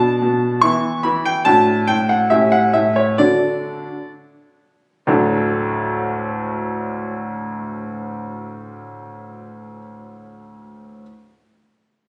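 Captured on a phone in a recital hall with moderate reverb, then given added club reverb and compression, this short cut from a longer classical-period piano sonatina features a clear, present baby grand piano up front, playing solo in 2/4 with an elegant, cheerful air and slowing down from 0.7 to 5.1 seconds, where the opening section gives way to a new one.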